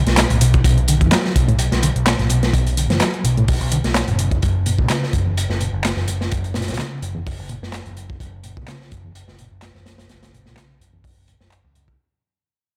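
A swaggering, funky breakbeat groove at 127 BPM with a light swing on the sixteenths drives this fading excerpt, as a crunchy, saturated acoustic drum kit with a tight kick and rolled-off top sits up front beside a punchy, tape-warm analog drum machine adding handclaps and hi-hat, while a dark, overdriven picked electric bass with tube saturation pushes round low notes under a reedy, worn, slightly out-of-tune electric piano riff in the background, its fast tremolo, 12-bit sampler grit and digital delay coloring a B5 to F#5 change at 4.4 seconds over a dry room with a faint mains hum.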